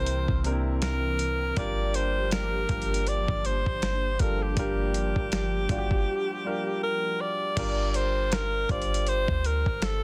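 Swung sixteenths drive this moody, late-night contemporary R&B excerpt, where a gritty, tape-toned sampler-style drum kit with a thumpy kick and medium-tuned snare drops out at 6.1 seconds and returns at 7.6 seconds, over a deep, boomy, clean 808-style bass sitting up front. A bright, punchy alto saxophone carries the solo melody in a forceful jazz style with vibrato, while a warm concert grand piano with a deep low end provides accompaniment. Behind them, a hollow, flute-like vintage pad with ensemble chorus holds mellow, warbling chords in the background until 7.5 seconds, all in a dry, dense and heavily limited modern mix.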